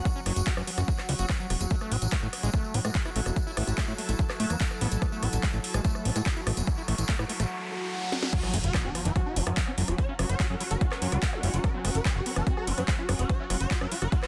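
A dense, heavily limited mix with light reverb carries this hypnotic, psychedelic trance excerpt at 145 BPM, where a punchy up-front electronic kick, a techno kit with cracking snare, metallic hats, handclaps, rim clicks and crash, and a jingly, close tambourine that stops at 7.5 seconds drive a fat, saturated analog bass, while a squelchy, gritty acid bass riff with digital delay, an overtone-sweeping drone with chorus and phaser, and a cloudy granular pad pump in the background until a riser builds into the drop at 8.3 seconds, where an impact hits amid background zaps and a swarming, aggressive rave lead with pulse-width modulation and a pitch-rise attack takes the melody.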